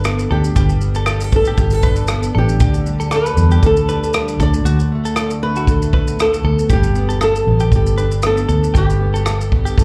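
Carefree and sunny, this short acoustic pop excerpt at 117 BPM in G major swings lightly in 4/4 as a fingerpicked flamenco guitar carries the melody over a double-tracked, full-bodied jumbo steel-string acoustic, a compressed, direct clean electric guitar playing warbly arpeggios, a round, foam-muted vintage bass up front, and a punchy country kit of kick, rim click and shaker, with the guitars bathed in plate reverb and slapback echo and the whole band heard through a club PA over chords moving from Gadd9 through Dsus4 and Bm7/D back to Gadd9.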